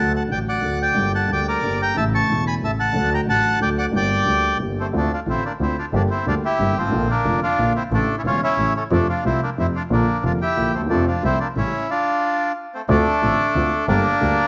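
A rubato tango in 3/4 sways at 181 BPM, sultry and passionate in mood, opening in G harmonic minor before settling into D minor at 4.9 s. The bandoneon carries the melody up front, its reedy, mid-forward voice ranging from F3 to C#6. Beneath it, a dark baby grand piano supplies mellow, intimate accompaniment with a vintage character and audible action noise. A single bowed double bass anchors the low end, focused and clear with vibrato and a smooth top. The trio sits in a small room ambience wrapped in a wet echo chamber reverb, and this fragment of a longer piece moves through chords such as Dm7, Bb, F and A7 before closing on Gm near 13.9 s.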